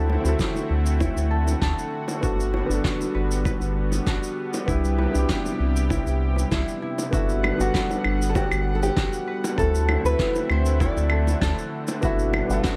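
A deep, round analog bass sits up front in this relaxed sunset chillout excerpt in G major at 98 BPM, under a lush detuned pad with chorus, a dark, mellow grand piano and a ringing concert harp with delay in the background, gritty compressed electronic kick, brushed fat snare with cabasa and claves, very quiet low-tuned bongos, and a fingerpicked nylon-string guitar with tape echo and audible finger squeak that takes the melody from 7.1 s over chords moving from D9 through Gmaj7 and Cmaj7.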